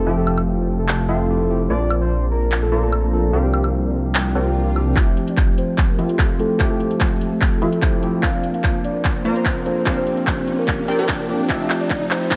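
Future bass in F major at 147 BPM with a half-time feel, this bright, playful clip opens with a round, wave-folded octave-layered synth lead carrying the melody over a worn, slightly out-of-tune tine electric piano through a combo amp, a punchy, airy supersaw stab riff in the background, and a thick detuned saw bass that drops out at 4.9 s, all pumping with sidechain under light reverb, while a trap kit with metallic hats, handclaps and woodblock joins at 0.3 s, a background swell and riser arrive at 4.3 s, and a punchy, up-front electronic kick enters at 5.0 s as filter sweeps and a drum fill drive the build-up over Fmaj7, Bbmaj7 and C9sus4 in a dark production.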